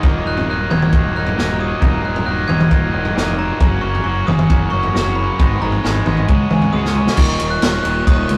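Cool and moody, this indie rock passage pairs a ringing, bell-like glockenspiel melody with a bright overdriven guitar riff and a clean, twangy guitar tucked in the background, over a growling, overdriven fingered bass and an up-front vintage drum kit with a punchy kick and dark cymbals, all captured as a rough rehearsal-room recording with light reverb and tube saturation, and a drum fill at 6.7 seconds leads into a brief closing shift at 7.2 seconds.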